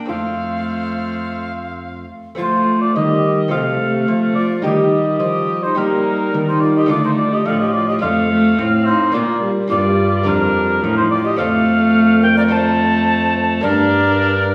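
Heard from further back in a recital hall, this renaissance-style consort dance sits in a wet, roomy reverb with a touch of small-room ambience, and it is cut from a longer piece. The mood is stately and festive, in a straight four-beat metre, with an airy, chiffy tenor recorder carrying the melody from 0.1 seconds with its crisp attack and lifted highs. As a second line, a mellow cor anglais sings up front with vibrato and a soft attack. Beneath them, a single bowed viola adds a gut-string, reedy period tone, and a delicate fingerpicked lute with double gut strings, some doubled at the octave, sits in the background. A smooth-topped trombone with light vibrato anchors the bass as the harmony moves through F, Eb, Dm, Bb, F and Gm.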